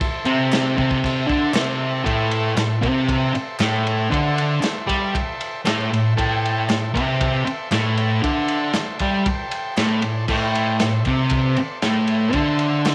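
A crunchy, gritty breakbeat drum kit with dark cymbals and a tight kick drives this swaggering, raw garage rock excerpt at 117 BPM in A minor, as a dark, double-tracked fuzz guitar riff sits up front from 0.3 seconds, a buzzy vintage combo organ holds sustained chords in the background, and very quiet, crisp group handclaps join, all in a moderate spring reverb.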